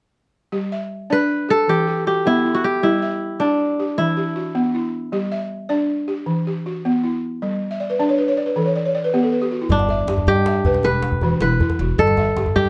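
Over a rolling 12/8 pulse, this flowing, joyful excerpt of West African string and xylophone music opens with up-front balafon arpeggios, dry and buzzing under soft rubber mallets. A bright, ringing kora melody, crisp and fingerpicked, joins at 1.1 seconds, and a balafon fill leads from 7.7 seconds into a new section. At 9.7 seconds the kora returns alongside a pizzicato upright bass with steel strings and a tight, cracking djembe played with soft hands in a live room, all under light reverb.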